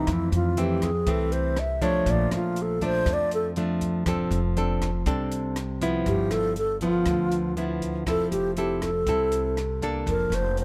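Bossa nova in F major at 120 BPM, this sophisticated, relaxed passage is cut from a longer piece and sits in a dry space with little reverb. A breathy wooden-headed alto flute carries the melody up front, with a soft attack, vibrato and expressive phrasing, taking a solo for the first 6.1 seconds. A fingerpicked nylon-string guitar, also up front, supplies classical-toned accompaniment through chords moving from Fmaj7 to Bbmaj7 and F6, then to G6 when the second section arrives at 6.1 seconds. A woody, thumpy pizzicato upright bass anchors the low end, while a compact cocktail drum kit enters at 0.1 seconds with hi-hat, rim click and a punchy kick, its dark, smooth sound rolled off at the top. The intimate balance keeps the flute and guitar forward, with the small-room kit sitting quietly behind them.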